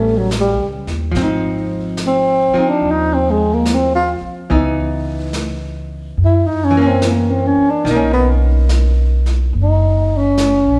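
Swung eighths at a slow 72 BPM in 4/4 carry this romantic, intimate jazz ballad excerpt, with the upright bass plucked pizzicato in a woody, up-front tone and a brushed drum kit entering at 0.3 s with brushed snare and hi-hat. A breathy tenor saxophone takes the solo melody close to the ear, its whispered subtone colored by vibrato and scooped notes. Beneath it, a hollow-body archtop guitar adds dark, clean, compressed picked chords moving from A9 through Ab6, Dbm9 and Gb7 to Bmaj9, all bathed in the moderate reverb of a recital hall.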